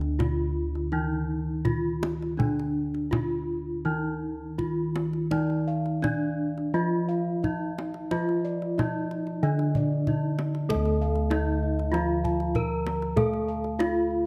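Stately and hypnotic, this short cut from a longer Javanese gamelan piece moves in a steady, straight four. A bronze metallophone carries the melody up front, its wooden-mallet strokes ringing with the shimmering beats of paired tuning and an airy sheen. Beneath it, a second metallophone struck with a horn mallet adds a bright accompaniment, while bossed gongs anchor the bass with a round, beating tone, and the kendang drum is heard tight and close under hard hands. At 5.3 seconds, softer bossed gongs played with padded beaters add mellow arpeggios high above. At 10.7 seconds, where a new section begins, another metallophone joins with gentle padded-disc arpeggios. Light reverb and close, detailed microphones keep the bronze textures vivid and present.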